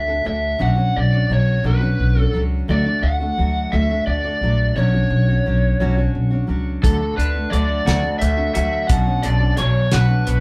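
Recorded live by a band in one room with light reverb, this folk rock and heartland rock passage, cut from a longer piece, moves at a slow 58 BPM in 6/8 with an open-road, nostalgic mood, tuned to A4 = 438 Hz and swaying between D and Bmadd9. An overdriven, lo-fi lead guitar through a small cranked amp carries the melody over a full-bodied jumbo acoustic guitar, picked with audible finger squeak, and a woody, thumpy pizzicato upright bass sitting up front. At 6.8 s a dry, damped 70s drum kit with a fat snare and tight kick joins, alongside a bright, twangy, slightly broken-up electric guitar riff from a small old amp.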